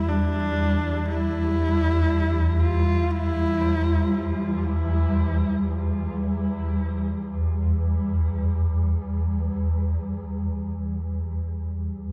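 Dark ambient drone in free time and E minor, unsettling and ominous: a swarming, detuned, granular drone with built-in reverb sits up front from 0.0 to 12.1 s, a rich, husky horsehead fiddle with vibrato and portamento carries a bowed melody through diffuse ambient delay until 4.6 s, and a very quiet bronze gamelan-type metallophone rings out arpeggios until 9.7 s, all set in a wet cathedral reverb.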